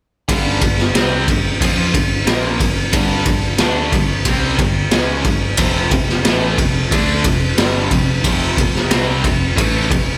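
From 0.3 seconds, a gritty, saturated garage drum kit sits up front with a punchy kick, a high-tuned snare and a ride cymbal in a small room, while a cranked stack guitar with overdrive and phaser and an overdriven electric guitar with spring reverb and slapback echo play a bright riff in the background over a direct, picked electric bass, moving from G5 to F5 at 5.6 seconds in this energetic, swaggering hard rock fragment cut from a longer piece.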